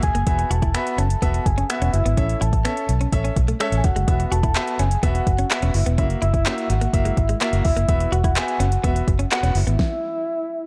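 Dance-pop with a summery, upbeat mood, this short cut pairs a full, round synth lead carrying the melody through chorus, tremolo and delay with a clear, polished grand piano and a dark, foam-muted fingered bass, both pumping against the beat. An overdriven electronic drum kit with a fat snare, metallic hats and finger snaps sits up front while a direct-recorded clean guitar plays a compressed, picked riff, and a barely audible group handclap joins at 4.6 seconds. The parts drop away near 9.8 seconds, leaving the synth lead to ring on alone until 10.7 seconds.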